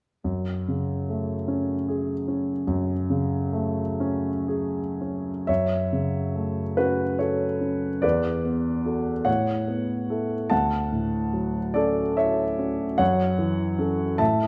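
A grand piano plays alone and close at hand, its intimate, natural tone carrying long sustain and an audible rustle of the action beneath the notes. This is a short passage of impressionist classical solo piano in F# minor, moving in a slow, rubato 6/8 that drifts between 37 and 51 BPM counted in dotted quarters, with a mysterious, wistful mood. The writing spans from D2 up to A5, opening on F#madd9 before a new passage arrives at 5.5 seconds on F#m7. From there the harmony wanders through E9sus4, A69 and Dmaj9 before settling back on F#m7 at 13.0 seconds. A moderate recital hall reverb surrounds the instrument, and the dark, warm production gives the sound a hushed, enclosed quality until the piano stops at 14.5 seconds.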